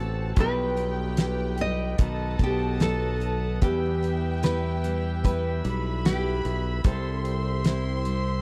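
A heartbroken, melancholic pop ballad in E minor at 74 BPM, this short excerpt sets a fingerpicked nylon-string guitar melody, full-bodied with finger squeak and slapback echo, over a dry, close 1970s-style studio sound, entering at 0.4 seconds alongside a damped drum kit with a fat snare, tight kick and hi-hat. Up front, a growly, punchy fingered electric bass anchors the harmony as it moves from Em/B through B and Em to C, while a dark, woody violin section with vibrato carries a second line. A muted upright piano with audible action noise sits in the background, a very quiet dreadnought acoustic guitar picks arpeggios, and a reedy tonewheel organ, lightly overdriven with lush chorus, holds sustained chords.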